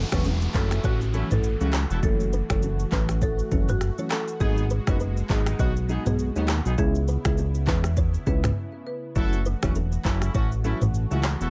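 Smooth and sultry, this afrobeats excerpt moves at 101 BPM in F# dorian with a swung sixteenth-note feel, cycling through F#m7, G#m7 and C#m7 chords over a fat, thick analog bass and an up-front afro-pop drum kit with a deep kick, rim clicks, shaker, toms, handclaps and finger snaps. A woody, close-miked marimba carries the melody with delay and plate reverb until 9.0 s, while a distant horn section with light vibrato plays a second line, and a very quiet, hollow kalimba riff sits alongside soft, round electric-piano-like synth keys. A chorused analog pad holds sustained chords in the background, an electronic downlifter sweeps through the opening until 4.4 s, and a brief break arrives at 8.6 s in a dry mix.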